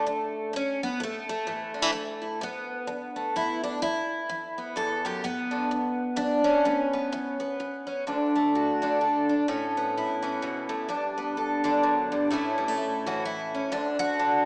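Folk instrumental for solo fingerstyle twelve-string acoustic guitar, peaceful and gently swung in a lilting three-beat metre, taken from a longer piece. The picked dreadnought sits up front with a shimmering, octave-doubled ring, moving from a minor-tinged opening through chords such as Bm7, G and Aadd9 before a second passage from 8.1 seconds settles toward D. A lush hall reverb surrounds it, though the rough home-demo mix gives the whole a small-speaker character.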